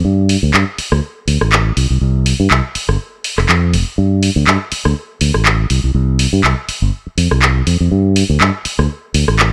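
A bright, growly fingered electric bass opens this funky, joyful excerpt of filtered disco house, sitting up front with a direct, close sound in the low register from F1 to G2. A low-pass filter sweep runs across the bass for the whole clip, giving it a moving, shaded character. At 0.3 seconds a punchy analog drum machine joins, also up front, with handclaps, hi-hat and rim click over a 4/4 groove at 122 BPM. The sixteenths carry a light 55% swing, and the tuning sits at A4 = 436 Hz, a touch beneath standard pitch. A digital ambience surrounds the pair, and both parts play through to the end at 9.5 seconds.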